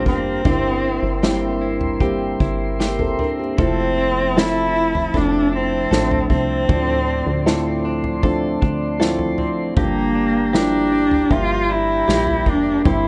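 A tender, heartfelt pop ballad excerpt at 78 BPM in 4/4 opens with a bowed solo cello carrying the melody with vibrato and portamento, over a soft, thick-felted upright piano, flute-like tonewheel organ chords turning through a slow rotary speaker, and a clean, scooped electric guitar picking arpeggios in the background with a warbly pitch drift. A plucky, fast-attack analog bass with a funky, wave-folded bite anchors the changes from C7/G to Fmaj7, Dm7 and Gm7, while an up-front acoustic kit played with bundle sticks enters at 0.1 seconds with a punchy kick, medium-tuned snare and toms. The whole passage sits in an intimate small-room ambience with a dark, rounded top end.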